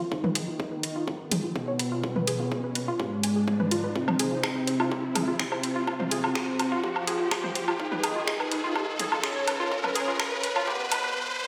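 A fat, nasal analog lead carries the melody up front in this cinematic, driving melodic techno excerpt at 125 BPM, its detuned sawtooth and square tones sitting over a sub octave with vibrato, analog chorus, delay and sidechain pumping while the chords move from Abm to Fm and back to Abm at 7.8 seconds. Above it a lush, detuned unison pluck spins arpeggios through cassette-tape grit, digital delay and a filter sweep, as an electronic riser builds across the whole 11.5 seconds. A punchy, high-passed electronic kick and an up-front house kit of finger snaps, bright hi-hats, toms and woodblock drive the build-up, all washed in a lush hall reverb that sounds like a big system playing in a bare room.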